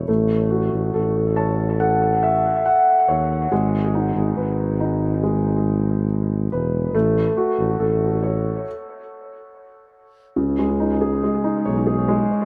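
This pop ballad, cut from a longer piece, moves at a slow 70 BPM in a straight 4/4 in C# minor, carrying an emotional, heartbroken mood. A warm concert grand piano with a deep bass register plays the accompaniment up front, its chords passing through F#m/A and G#m before settling on C#sus2, all treated with a dub echo. The piano plays a fill from 0.9 to 3.5 seconds, then stops at 8.7 seconds before the music moves into a new section. A mellow tuba, close-miked and up front, carries the bass line in a jazz style, with light vibrato and scooped notes. A wet spring reverb and an echo-heavy mix give the recording a spacious sound.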